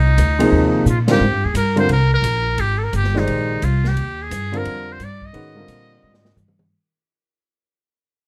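A swung 174 BPM pulse in 4/4 drives this spiritual, hypnotic modal jazz excerpt built on Ab chords. A woody pizzicato upright bass sits up front beside an intimate grand piano with audible action noise. A small-room drum kit with dark cymbals and a punchy kick plays a fill from 0.9 seconds that carries through a band accent at 1.0 seconds. The melody comes from a metal-muted trumpet, buzzy and breathy with whispered vibrato and plate reverb, as the dark production fades out from 1.2 seconds.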